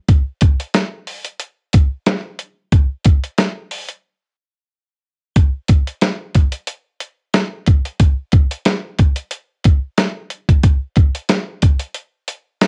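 Gritty and dark, this hip hop excerpt at 91 BPM in 4/4 with a gentle 16th-note swing rests on a dusty, sampler-style soul drum kit placed up front, its compressed hi-hat, thumpy kick and medium-tuned snare running through a break from 4.0 to 5.4 seconds before a new section carries on to 12.7 seconds, all set in light reverb with the homespun character of a cassette recording.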